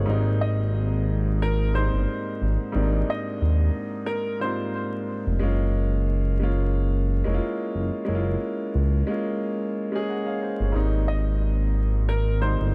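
A 90 BPM boom-bap groove in 4/4 with a light swing on the sixteenths sets a confident, soulful mood in Ab major, as a dark, boxy concert grand piano with long sustain moves from Abmaj9 to Gbmaj7 over a smooth, detuned synth bass sitting up front. A clear, woody upright piano carries the melody with a vintage touch and analog delay, playing from 0.4 to 4.9 seconds and returning at 11.1 seconds. The dry, dark and warm production is wrapped in vinyl crackle, and this short cut from a longer piece closes back on Abmaj9.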